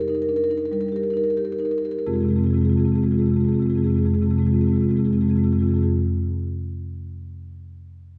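The rhythm moves in an unhurried 5/4 with a rubato feel, and the opening stretch slows down through its first 2.1 seconds. This short excerpt from a longer contemporary classical piece features a solo marimba played with soft mallets, its rosewood bars giving a woody, round, mellow tone that sits up front. The marimba sounds from the start until 5.9 seconds, ranging from F2 up to Bb4. The harmony rests on an Ebadd9 over F before settling onto F minor at 2.1 seconds, and that arrival opens a second section. A wet scoring-stage reverb with a long tail lets the notes hang in the air, lending the music a hypnotic, reflective mood.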